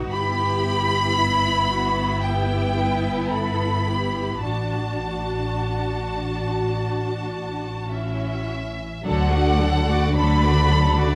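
Classical slow romantic movement for string orchestra, serene and rubato, in which a lush violin section with a soft attack carries the melody over a smooth, even second violin line set in the background, while expressive violas and cellos glide with portamento above an up-front double bass section, heard through close, detailed microphones in a moderate concert hall reverb, with the harmony arriving on D at 9.1 seconds.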